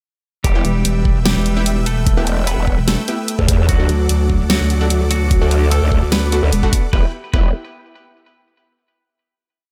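A half-time 148 BPM beat in 4/4, built from a knocking electronic kick and a dubstep kit's huge snare with closed and half-open hats, drives this heavy, menacing wobble dubstep drop in E minor, where a pulsing, mellow pluck wobble bass answers a growling, saturated growl bass, both with chorus and overdrive and changing wobble speed, beneath a clean, bright semi-hollow electric guitar riff in octaves with delay, lush detuned supersaw chords pumping from the sidechain, and sparse, punchy orchestra-hit-like stabs carrying their own reverb, moving from Em to D before settling on a final E minor chord at 6.9 seconds in a dry mix.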